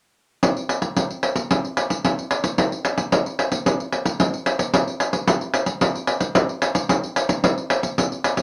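A lone pandeiro carries this short samba fragment, its jingly, acoustic sound sitting up front in the mix. The drum plays from 0.4 seconds through to 8.4 seconds in a straight 4/4 feel. A small, wet room reverb surrounds it, lending the performance an intimate, close quality. The passage moves through two sections, shifting into the second at 4.7 seconds. Cut from a longer piece, the music carries a bittersweet, nostalgic mood.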